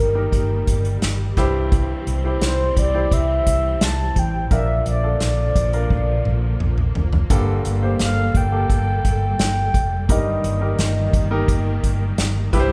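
A hopeful, uplifting piano-driven pop passage opens with a clear baby grand piano, lush bowed symphonic strings, a dark, round foam-muted electric bass and a horn-like synth lead that carries the melody with a soft, warbling, vintage tone, chorus and vibrato. An airy acoustic drum kit played with bundle sticks enters at 0.3 seconds, its tight kick and medium-tuned snare sitting up front, with a drum fill from 5.9 to 7.3 seconds. The chords move from Eb/G through C, Bb and Gmadd9 back to Eb/G, and the recording carries the moderate reverb of a recital hall.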